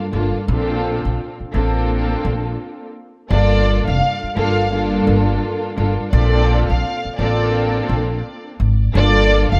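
A woody, dark pizzicato upright bass sits up front in this moody, gritty boom-bap hip-hop piece at 85 BPM in G minor, swinging beneath a warm, intimate bowed string section played sul tasto with vibrato, a soft attack and a cassette-tape grain; a brief break at 2.6 seconds leads into a lush, smooth violin section carrying the melody with digital delay from 3.3 seconds, over Bbmaj7 and Gm7 chords in a rough small-room home-demo mix.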